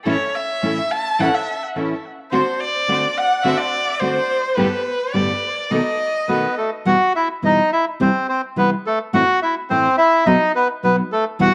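A solo violin with vibrato, portamento and tape echo sings a distant, expressive second line over fingerpicked classical nylon-string guitar, with audible finger squeak, and gut-string stabs from a period-style chamber string section, opening this tense, dramatic rubato tango at 106 BPM in 4/4 over A, D7, Gadd9 and B7, before a reedy, vintage, band-limited bandoneon enters up front at 6.3 seconds to carry the melody into E harmonic minor from 6.9 seconds, moving through Em, C, Am and B with the warm guitar until the cut at 11.5 seconds, all set in wet spring reverb and small room ambience.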